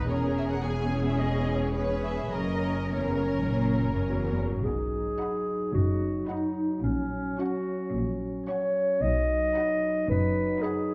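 A mellow, roomy solo clarinet stands up front in this dramatic, urgent orchestral classical excerpt, entering at 4.1 seconds with a second line among the strings. Bowed string sections carry the piece from the start, set in B major at about 107 BPM in 4/4 with a rubato feel and uneven beats. The high violins sing the melody with smooth, even vibrato while a second, more distant violin line and lush violas fill out the accompaniment. Below them, a focused cello section sits in the background and a double bass section plays up front with expressive portamento. A close-miked, tight French horn section adds sustained chords from 4.7 seconds as the harmony moves from C#m/E and F# toward a settled B. A dark production and the long tail of a scoring-stage reverb give the ensemble a spacious, cinematic depth.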